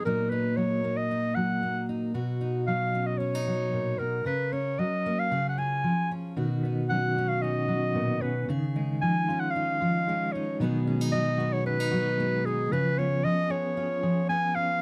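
Pastoral and peaceful, this acoustic folk fragment at 114 BPM sets a classical-style clarinet melody up front over a full-bodied, fingerpicked steel-string guitar with fresh strings, while a clean, compressed electric guitar with tremolo slips into the background with arpeggios at 6.4 seconds, all in a close, detailed room with light reverb and a faint mains hum.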